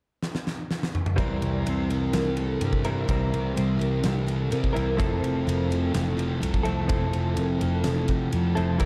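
Blissful and hazy, this shoegaze and dream pop rock excerpt opens with a drum fill from a huge arena kit with a punchy kick and fat snare, then at 1.2 seconds settles over C7 and Fmaj7 as a thick, dark fuzz guitar riff with lush chorus, a clean, compressed direct-recorded electric guitar riff with reverse reverb, a round, foam-muted picked bass, and a woody, shimmering twelve-string acoustic playing arpeggios in the background through ensemble chorus and analog delay all join in.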